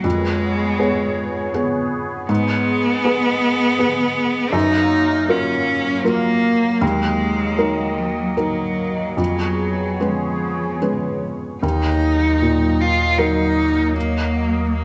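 Melancholic and fragile, this neoclassical piano-and-strings piece drifts in a rubato 3/4 at 79 BPM in Eb minor, cut from a longer work. A felt-muted upright piano sits up front with a soft, intimate tone and audible action noise, while a rich, focused solo cello sings a bowed second line with vibrato, both framed by a swirling, detuned sawtooth pad treated with phaser and chorus. At 11.6 seconds a round sine sub bass enters on Eb as the chords settle back onto Eb minor, all set in a wet echo-chamber reverb with studio ambience.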